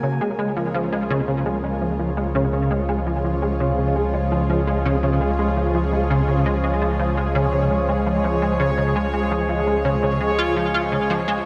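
Luminous and expansive, this ambient excerpt at 84 BPM in Db major rests on a lush, detuned unison pad of sustained chorused chords and a deep sine sub bass with tube saturation, while a punchy, funky analog bass riff with ensemble chorus and tape echo moves under a filter sweep and a bubbling, resonant stepped-filter texture glimmers high above, all bathed in a long plate reverb.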